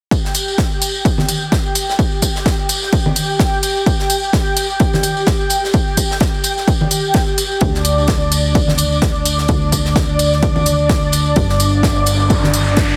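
A punchy, up-front electronic kick drives this energetic, soulful piano house groove at 128 BPM with a light 16th-note swing, joined by crisp, tape-toned electronic hi-hats, soft-handed vintage tambourine and congas, and an airy acoustic kit whose ride cymbal and medium-tuned snare sit in the background. Above them, a silky, chorused analog string pad holds sustained chords with a pumping sidechain feel. A funky, plucky sawtooth bass enters at 7.6 seconds, and an electronic riser builds from 11.6 seconds to the end of this excerpt, all under a heavily compressed, radio-like sheen with light studio reverb.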